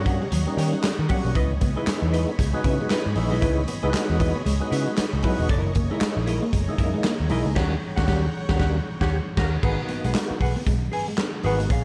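Funk in G# minor at 116 BPM with a 16th-note swing, this short, hypnotic and cool excerpt rides a raw garage drum kit with punchy kick, handclaps and crash up front, under a round, foam-muted picked bass and lightly overdriven tonewheel organ stabs with key click and slow rotary speaker. A clean, dark hollow-body jazz guitar accompanies while a very quiet, slightly broken-up electric guitar plays a riff, and a shimmering, sawtooth string machine holds sustained violin chords in the background until 9.6 seconds. The band hits accents from 7.6 to 9.6 seconds on a D#7#9 before the change to G#m7, all in a dry, dark mix.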